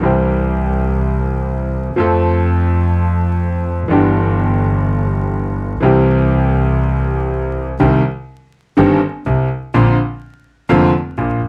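A bright concert grand piano sits up front with a brilliant, natural tone and deep bass, carrying the accompaniment of this passionate, tense tango fragment at 124 BPM in 4/4 with a rubato feel. A single bowed double bass plays beneath it, warm and intimate with light vibrato, a soft attack and an airy sul tasto sound, as the harmony moves from C major through F and G6 before turning to C minor at 7.8 seconds and on to Bbadd9. The close, dry 1970s-style studio sound carries light reverb and vinyl crackle, and the piano stops at 11.4 seconds, just before the bass at 11.5 seconds.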